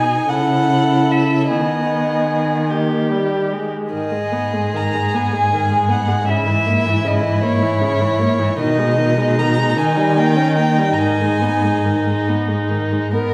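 Classical, a slow romantic string quartet movement in 6/8 with elastic rubato, elegiac and yearning in mood, cut from a longer piece. Up front, the first violin carries the melody in a dusky, intimate sul tasto tone with light vibrato and soft attacks, falling silent at 12.3 s. Beneath it the second violin spins an even, glowing second line, while the somber viola and full-bodied cello sound more distant, sliding expressively between notes with portamento in a reverberant hall.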